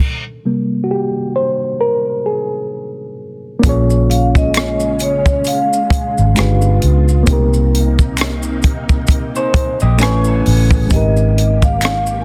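An introspective, soulful neo-soul R&B excerpt at 66 BPM in a swung 4/4 opens with a reedy, slightly out-of-tune electric piano playing alone through its built-in speakers with overdrive and spring reverb, before a dry cocktail kit with a punchy kick, a dark, round, foam-muted electric bass, and compressed, saturated maracas with finger snaps and group handclaps enter at 3.6 seconds. A silky, warbling string machine and a ringing vibraphone melody with slow motor vibrato and slapback echo join shortly after. A slightly broken-up, lo-fi guitar adds a brief second line at 9.4 seconds, over chords moving from Abmaj9 through Bbm7, G7b9, Cm7 and Amaj9 back to Abmaj9, all in a dense, heavily limited master.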